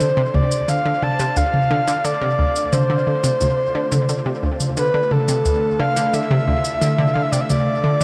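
A breathy, flute-like synth lead with chorus and tape echo carries the melody up front in this cosmic, expansive piece of sequencer-driven ambient space music at 88 BPM, over a round analog pluck riff, a morphing wavetable pad that fades in with phaser behind it, and electronic shaker and toms, all held on a D minor chord in a huge ambient reverb throughout its 8 seconds.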